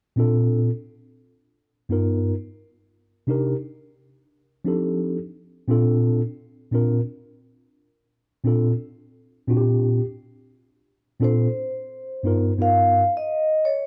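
A worn, warbling cassette sound with a warbly pitch drift and a small, wet room gives this cool, relaxed hip hop fragment its hazy character, moving at 87 BPM with swung sixteenths in Bb major. A mellow, clean tine electric piano sits up front from the start, voicing a Bbmaj9, G7alt, Cm7, F13 progression with plate reverb. At 11.2 seconds a soft-mallet vibraphone takes the melody in a high register, its metallic, ringing tone shimmering with slow motor vibrato as the piano drops out at 13.0 seconds.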